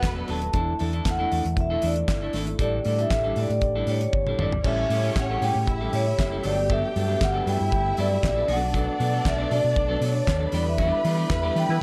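Disco at 117 BPM in a straight 4/4, driving and danceable, heard in a short cut from a longer piece with a dark, polished studio sound and light reverb. A vibraphone played with soft mallets carries the melody, sitting mid-forward in the mix, its metallic, ringing tone marked by a slow motor vibrato and a slapback echo. Underneath, a round, punchy fingered electric bass and a damped 70s drum kit with a fat snare, tight kick, dark cymbals, hi-hat, toms, crash and handclaps drive the groove, with a drum fill leading into the second section at 4.6 seconds. A bright, twangy clean electric guitar picks out accompaniment with a warbly pitch drift, while a mellow French horn section holds sustained chords in the background. A lush, bowed violin section with expressive vibrato sounds briefly at the very start and then adds a second line from 4.6 seconds. The harmony moves through chords such as A7, Gmaj9, Bm7 and Em7, and a band accent closes with a punchy horn section stab at 11.7 seconds.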